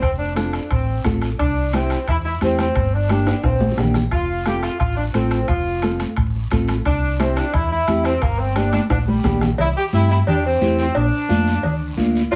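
A clear saxophone section with light vibrato carries the melody up front in this passionate, danceable cumbia at 176 BPM, over a round, dark hollow-body electric bass, a mellow electric guitar tinted with phaser, high-tuned congas, a raspy guiro, ringing timbales and cowbell in the background, and a soft-beater bombo that stops at 9.6 s, when a punchy trumpet enters behind as a second line, the whole sound heard from further back in a wet room.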